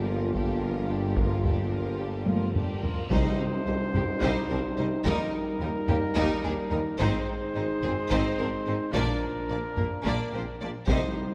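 Relentless and heroic, this cinematic, epic orchestral film-score passage in an uneven seven-beat metre, cut from a longer piece, opens on lush, vibrato-rich violins carrying the melody over a warm second violin line, a very quiet viola section, sustained chords from a warm French horn section, and a low foundation of distant cellos, double basses and a clear, vintage-toned tuba, with a taiko ensemble coming in on heavy sticks at 0.3 seconds. After a drum fill, the full band hits an accent at 3.1 seconds as a soft-attack solo trumpet begins its stabs, hard-mallet timpani and a bright, very quiet tam-tam strike, and the harmony moves from C minor through Eb and Ab to Bb. The timpani return briefly near 10.9 seconds, all within a moderate concert hall reverb.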